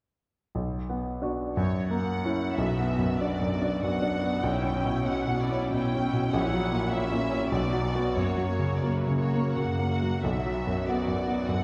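A romantic classical excerpt for piano and orchestra in B minor, brooding and passionate, moving in a rubato 3/4 at roughly 80-104 BPM. The clear, up-front concert grand opens the melody at 0.5 seconds with deep bass and short sustain, and a lush violin section with a smooth top joins it at 1.6 seconds. From 2.6 seconds a rich, distant viola section adds accompaniment and expressive cellos supply the bass, both sitting in the background of a reverberant scoring stage heard from further back in the room.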